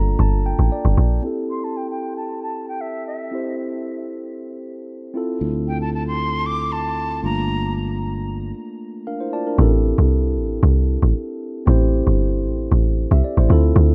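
A rough home-demo mix with digital ambience frames this late-night, deep amapiano cut from a longer piece, where a mellow, clean tine electric piano under a low-pass filter carries the chords throughout. A round, percussive log drum bass drops in at the start and returns at 9.6 seconds. In between, a breathy, bright jazz flute with vibrato and tape echo sings the melody, a growly fingered electric bass joins at 5.4 seconds, a filter sweep runs through the middle stretch, and the electric piano adds fills on either side of it.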